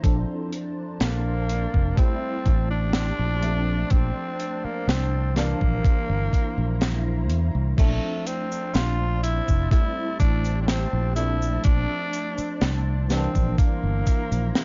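A slow, dreamy vaporwave piece at 62 BPM in Bb lydian opens on a worn, slightly out-of-tune tine electric piano with ensemble chorus, a silky string machine holding sustained chords in the background through phaser, chorus and 12-bit sampler grit, an up-front fingered electric bass, a thumpy sampler-style electronic kick, and a crisp fusion kit with bright cymbals, cabasa and a high-tuned snare, before a breathy, raspy tenor saxophone with vibrato and tape echo takes the melody at 1.0 seconds, all within a faded, dark small-room sound that cycles through Bbmaj9, Am7 and C7.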